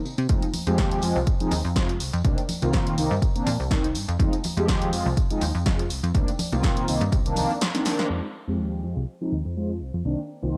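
Mellow, brassy synth chords, round and dark with chorus, phaser and tape colour, sit up front and pump against a punchy electronic kick in this funky, nostalgic filtered disco house excerpt at 123 BPM in F dorian, swinging gently on the Fm7 to Cm9 changes. A plucky, detuned sawtooth bass with a moving notch drives beneath, while a tape-saturated analog drum machine's hi-hat and snare and close, dry tambourine and congas sit further back, all heard through a spring reverb with a homemade cassette sound. The kick stops at 7.2 seconds, a drum fill and band accent lead into the final section at 8.1 seconds, and from there the brass and bass carry on alone under a filter sweep.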